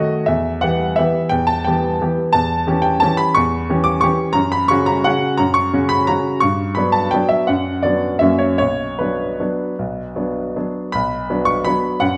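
A lilting three-beat rubato sways through this playful, elegant classical piano waltz, cut from a longer piece. The solo baby grand sounds brilliant and up front with a short sustain, ranging from deep bass to high treble, set in a moderate recital hall reverb within a dark overall production. Harmonies pass through Em, C#dim/E, F#, Gmaj7 and F#7 before settling on Bm, and a new section begins at 10.9 seconds just before the piano stops at 12.2 seconds.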